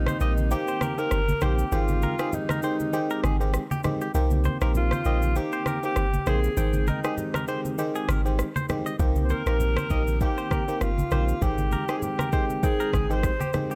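A breathy alto saxophone with light vibrato carries the melody up front in this smooth, sultry afrobeats piece at 99 BPM in C minor. Its distant, roomy tone is trailed by digital delay over a swung sixteenth-note feel. A biting, percussive FM electric piano with chorus shares the foreground with a punchy sine sub bass that has a pitch-drop attack, while a bright, twangy, direct-recorded clean guitar plays a compressed picked riff with subtle chorus and delay. An electronic afro-pop kit with a deep kick, rim click and shaker joins low-tuned, thick-skinned acoustic congas over alternating Cm7 and Abmaj7 chords, with a break running from the start to 9.0 seconds and light reverb around the mix.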